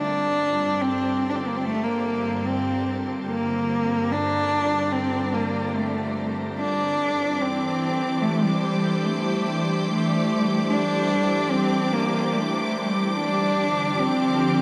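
A soft, organ-like pad fades in from the start, pure and full-bodied with a slow attack and long release, carrying sustained chords under a bowed solo cello that sings the melody between G3 and D4. This peaceful, luminous ambient excerpt moves at 73 BPM in a straight 4/4, tuned to A4 = 439 Hz. The cello sits up front with a nasal, boxy, focused tone and vibrato, touched by tape echo, while the detuned sine-based pad shimmers through ensemble chorus and its own reverb. At 6.6 s a rich symphonic violin section enters, holding a high D6 as a smooth, even texture softly behind the other parts. The harmony drifts from C7sus4/G to Am7 and settles on Gsus2, all bathed in a long, wet shimmer reverb with a 7.5 s tail.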